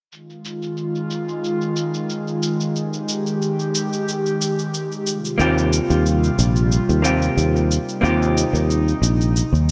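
Sunset chillout at 91 BPM in F minor, wistful in mood, with a light swing on the 16ths. A breathy, detuned pad with chorus holds sustained chords from the start beside a gritty shaker dulled by a low-pass filter, and the harmony moves from Fm7 to Eb69 at 5.1 seconds. At 5.4 seconds a dark, clean hollow-body jazz guitar with digital delay adds accompaniment while a growly, punchy fretless bass sits up front, the whole piece set in a lush hall reverb.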